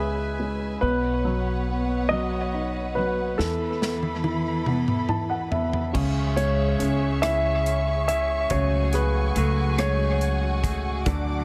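A clear, intimate concert grand piano carries the melody with audible action noise and tape echo in this aching, dramatic pop ballad in six-eight, cut from a longer piece. A woody, slightly detuned upright piano plays the accompaniment, a smooth bowed string section with vibrato holds chords, and a growly pizzicato upright bass sits up front. A punchy studio drum kit with bright cymbals enters with a fill at 3.4 seconds, and at 5.9 seconds a clean, compressed electric guitar joins in the background with phased, echoing arpeggios, all within an echo-heavy mix with moderate spring reverb.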